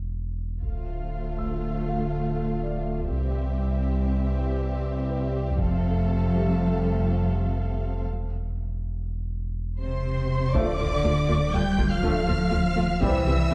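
A cinematic hybrid of orchestral and electronic film score in D dorian at 121 BPM in 5/4, this relentless, futuristic passage rests on a deep, full sine sub bass that sits up front beneath woody, background double basses and close, expressive cellos, while warm second violins and violas fill the middle and a distant, dark violin section carries the lush melody high above. Clear, vintage trombones hold sustained chords, a worn, very quiet baby grand piano adds texture from 1.4 seconds, and a very quiet taiko ensemble struck with heavy sticks returns in bursts, joining mellow French horns at 10.5 seconds as the music moves into its second section. Concert hall reverb gives the dark production a wet finish.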